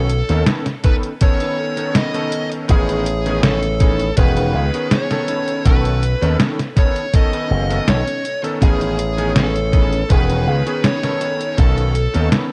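A digital ambience surrounds this short vaporwave clip, cut from a longer piece, where a thumpy, sampler-style electronic kick sits up front beside a detuned 8-bit drum machine with a medium-tuned snare and hi-hat. At 81 BPM in a straight 4/4, the mood is nostalgic and faded, with the harmony moving between B9 and Amaj9#11 throughout. A punchy slap bass with an envelope filter and tube saturation sits high in the mix, bright and direct, spanning E1 to D#2. A cutting electric grand piano with a clangy low end and long sustain carries the accompaniment, colored by ensemble chorus and vintage 12-bit sampler grit. In the background, a clean, picked electric guitar plays a riff through chorus and tape echo. Over it all, a dark, overdriven lead guitar sings the melody between G#4 and D#5, its picked notes trailing tape echo.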